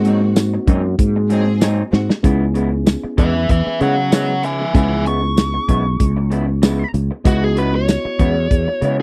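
Opening on a soul drum kit with a tight kick and rolled-off top, a growly, chorused fretless bass, slightly broken-up guitar stabs through a small old amp, a gritty, reedy electric piano in the background and lush bowed strings that drop out at 2.1 seconds, this mournful, smoky soul blues excerpt at 96 BPM in C# dorian moves from G#7 to C#m7 after a drum fill, with a bright, overdriven lead guitar carrying the melody from 3.2 seconds in a dry, close 1970s-style sound.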